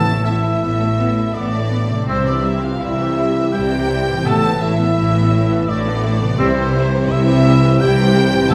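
Heard from further back in a reverberant recital hall, this sorrowful, longing cinematic passage sways freely in a rubato three-beat metre over chords alternating between Asus2 and C. A lush studio violin section carries the melody with portamento and expressive vibrato. Alongside it, a mellow, distant oboe adds a second line, joined by a bright clarinet, an airy flute section and a smooth-topped symphonic violin section with background second lines. These sit over focused violas, roomy French horns holding sustained chords, a very quiet, ringing fingerpicked harp in arpeggios, and a rich, even bass from cellos and double basses. Faint hard-mallet timpani sound until 0.9 seconds and return from 4.3 seconds to the close at 8.5 seconds.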